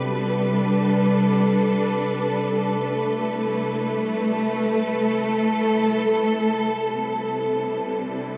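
A clear, focused studio string section sits up front in this peaceful, weightless ambient fragment, cut from a longer piece. Its bowed sustained chords carry vibrato and move from G to C69 at 2.8 seconds, filtered to soften the top. Beneath it, an organ-like drone of detuned sine tones fades in slowly, thickened by ensemble chorus and its own reverb, and holds calmly until 7.0 seconds. At 6.9 seconds a single bright cello enters very quietly and distantly, its bowed melody biting and intense with light vibrato. A cathedral reverb with a long 5.7-second decay places the music in a vast, echoing space.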